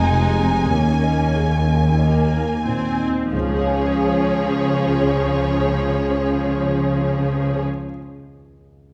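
Moving and uplifting, this short fragment of an emotional, cinematic film score unfolds slowly in a free, rubato pulse, easing back further through its opening 3.3 seconds before settling onto a resolved Db chord. A dark, expressive violin section carries the melody with soft attacks, vibrato and portamento, while a second violin section sits distant and even in the background on a rich, smooth second line. A clear, focused viola section fills the middle, and a mellow grand piano with a vintage, intimate character and long sustain accompanies, its action noise audible. Underneath, an expressive cello section in the background and a focused double bass section supply a lush bowed foundation. The strings fall away at 7.6 seconds, leaving the piano to ring alone until 8.9 seconds, all within the wet glow of a recital hall.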